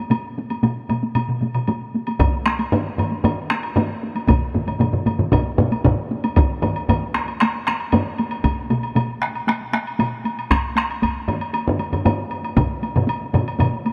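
Powerful and driving, this excerpt from a longer Japanese traditional taiko drum ensemble piece moves in a straight 4/4 pulse. Two taiko groups open together with a woody woodblock, one struck with hard sticks and heard close and dry, the other played with heavy sticks in a live room and placed up front. At 2.2 s two more taiko groups join, one with heavy sticks in a small room and one with hard sticks, close, dry and up front, and these two sit a little louder than the opening drums. The piece shifts into a new section at 6.4 s, with the full ensemble continuing until one of the later groups drops out at 12.7 s, while the others play on to the end. A huge ambient reverb with a long four-second tail gives the drums a cavernous, resonant setting.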